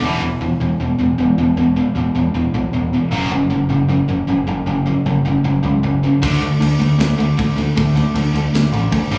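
Heard through a club PA with small-room ambience and only a touch of reverb, this short, energetic punk rock clip runs at 155 BPM in 4/4 with a half-time feel, built on E5, F#5 and D5 power chords. A bright, double-tracked overdriven electric guitar drives the riff up front alongside a growling, picked electric bass with its own overdrive. A tight metal drum kit with a tight kick, medium-tuned snare and crash cymbal joins at 6.2 seconds.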